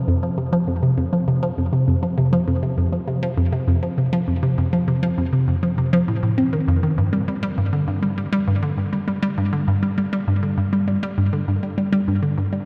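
A hollow square-wave pluck opens this mysterious, hypnotic ambient excerpt and carries it alone at 100 BPM in a straight 4/4, its detuned, bouncy notes ranging from F2 to C4 with a fast attack and short decay. Up front and mellow, the synth is shaped by a filter pluck and a moving notch, thickened with chorus and trailed by tape echo. A huge reverb with a 7.6-second tail places it in a vast, echoing space, and the part sounds until 12.6 seconds in this fragment of a longer piece.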